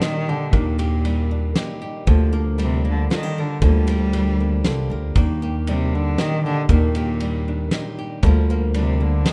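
Folk in 3/4 at 117 BPM, this haunting, reflective excerpt moves between Ebmaj7 and Gm7/D. A single bowed cello carries the melody up front, its tone rich, nasal and intense with light vibrato. A fingerpicked nylon-string guitar plays classical-style accompaniment. Behind it, an old ladder-braced acoustic guitar with aged strings picks boxy, woody arpeggios in the background. A loose indie drum kit sits up front with a punchy kick, fat snare and ride cymbal in a pumping studio room, and a dark pizzicato upright bass on steel strings enters at 0.5 s, also placed up front. Light reverb and a rough home demo mix give the piece a close, unpolished feel.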